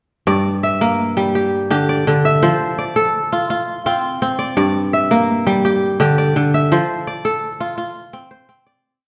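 A solo kora, crisp and ringing up front, fingerpicks a flowing, hypnotic interlocking ostinato in this short West African traditional string piece, moving at 112 BPM in a straight 12/8 through G dorian over alternating Gm and F chords, carried by a recital-hall reverb until a fade-out from 6.7 to 8.9 seconds.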